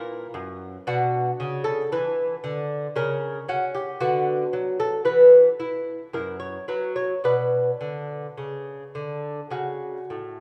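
Solemn and grave, this brief cut from a longer baroque-style dance in B minor features a solo lute, bright and delicate with fingerpicked nylon double strings, some of them octave-doubled, played up front in a slow, rubato 3/4 at 50-58 BPM through a lush hall reverb and a rough home demo mix, its chords moving from F#7/A# to Bm, passing through a moment with a chordless stretch, then moving through Bm/D, E5 and F#7 back to Bm.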